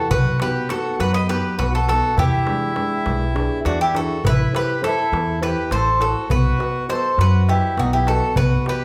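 Set in a 7/8 metre with a straight feel, this short excerpt of Greek folk music moves through a cool, bittersweet cycle of B, E7 and A minor, with the band playing live together in one room inside a lush, roomy studio reverb. The picked bouzouki carries the melody up front, its metallic double strings partly octave-doubled, while a reedy, airy accordion adds a full second line beneath it. A dark, thumb-plucked classical nylon-string guitar supplies accompaniment, the pizzicato upright bass on steel strings gives a woody low end, and a clay-shelled darbuka with a natural skin head is struck with hard hands.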